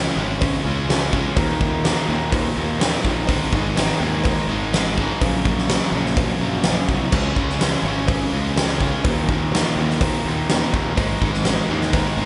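A huge arena drum kit leads this swaggering, driving classic rock excerpt at 125 BPM, up front with a fat snare, punchy kick, crashes and hi-hat, joined by a very quiet, saturated cowbell from 0.4 seconds. Behind them, a bright, tight distorted guitar and a hollow-body overdriven guitar with spring reverb pick out a riff over Db5, Eb5, Ab5 and Gb/Bb chords, while a growly fuzz bass played with the fingers anchors the low end. The big arena sound sits in a moderate concert hall reverb, cut from a longer piece and running to 12.3 seconds.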